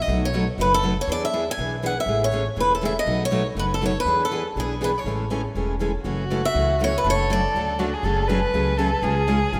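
A brisk 4/4 swing at 241 BPM, with a light 55% lilt on the eighths, drives this playful jazz manouche clip, cut from a longer piece. Up front, a bright, boxy picked swing-style guitar carries the melody, while a woody, thumpy upright bass on gut strings plays pizzicato in its dark low register. Two picked steel-string acoustic guitars with fresh strings and audible finger squeak fill out the accompaniment, one full-bodied and set further back. The opening section cycles through B7, E7 and Amaj7 in A major before the harmony shifts to F# minor at 6.1 s. A bowed violin enters at 6.0 s with a soft attack, expressive vibrato and portamento, taking a second line as the lead guitar drops out at 7.9 s. A lush hall reverb surrounds the rough home-demo mix.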